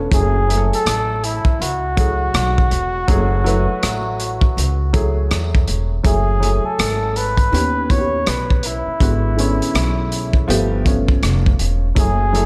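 A dreamy, reverb-soaked mix with a moderate plate and the ambience of a small room gives this jazz-hop excerpt its nocturnal, smoky air. The crunchy breakbeat kit sits up front, its tight kick, hi-hat and rim click dark, saturated and gritty with a rolled-off top, moving at 81 BPM in 4/4 with a lazy swing on the sixteenths. Beneath it, the upright bass plays pizzicato on gut strings, woody and thumpy, holding the low end in F# minor. A worn, slightly detuned upright piano supplies short-sustained accompaniment that drifts from F#m9 to D#7b13 at 7.5 seconds, then through G#m7b5 to G9. Over the top, a breathy flugelhorn solo enters at 0.1 seconds, its scooped notes and light vibrato trailing a tape echo in a jazz style.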